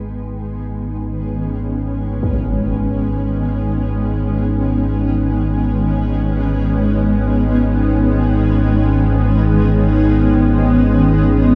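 A deep, rumbling drone and a blurred granular cloud pad fade in together from the start, the drone ominous and up front beneath the pad's slowly evolving sustained chords in this unsettling, cavernous dark ambient fragment. At 2.2 s a huge, dark impact sounds from the background, muffled by a low-pass filter. The dreamy mix is soaked in plate reverb and carries a cassette-tape character throughout.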